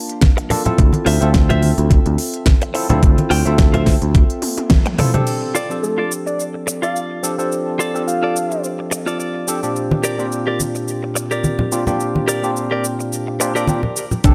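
Sunny and feel-good, this nu-disco excerpt moves at 107 BPM in F major with a gentle sixteenth-note swing, cut from a longer piece. A barky, bright tine electric piano carries the chords from the start, joined by a produced pop drum kit with a fat snare and crisp hats, a thumpy, tape-warm electronic kick, and close, dry congas. A clean, compressed electric guitar plays a picked riff up front through subtle chorus and delay, while a dark, round picked bass with tube saturation anchors the opening until about 4.2 seconds. A drum fill and a band accent at 4.7 seconds lead into the second section at 5.3 seconds, where the chords move from Dm9 to F6 and later Bb6. A soft, octave-layered synth lead with chorus and vibrato sings a brief melody from 5.8 seconds, and the guitar adds a fill before the congas return. In the final moment a soft, round pluck sounds a single pumping note as the kick and bass briefly reappear, all set in light reverb.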